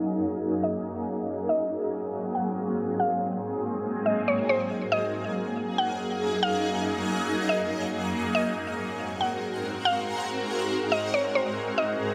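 A lush hall reverb wraps this short, dreamy hip hop clip in a soft, blissful haze, with a low-pass filter rounding off the whole mix. At 140 BPM in a half-time 4/4 feel, it sits in F# major, tuned slightly sharp to A4 = 445 Hz. A shimmering ambient pad holds sustained chords throughout, its detuned unison voices, octave-up sparkle and granular texture sitting bright and up front, coloured by chorus, built-in reverb and phaser. Above it, a woody, mallet-like synth pluck carries the melody, its round, percussive tone thickened with chorus and trailed by tape echo through a low-pass filter. A filter sweep colours the opening 4.7 seconds before the second section begins, while the harmony moves between F#69 and G#9 and arrives on C#9 at 11.6 seconds.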